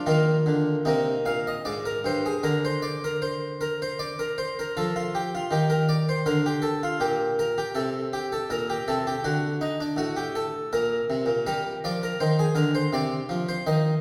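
Flowing and dance-like, this short cut from a longer baroque-style suite movement sets a solo harpsichord in 3/4 at 80 BPM with a rubato feel. The Italian-style instrument sounds plucked and brilliant, its octave strings carried up front and ranging from G2 to F5, while a wet recital-hall reverb places the listener further back in the room. The harmony moves from Eb through an Ebmaj9#11 at 4.7 seconds and on to Bbsus2 and G5 before settling on Csus24 near 12.9 seconds.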